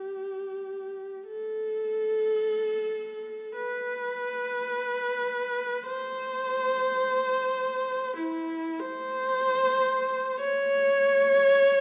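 Captured close and up front in a wet recital hall reverb with a 1.6-second decay, this short excerpt from a longer classical piece presents a lone viola in free time, tuned to A4 = 437 Hz. The dark, intimate tone comes from bowing sul tasto with a soft attack, an airy bow and light vibrato, staying between E4 and C#5. The mood is mournful and yearning, with a brief opening phrase giving way to a longer passage from 1.3 seconds to the end at 11.8 seconds.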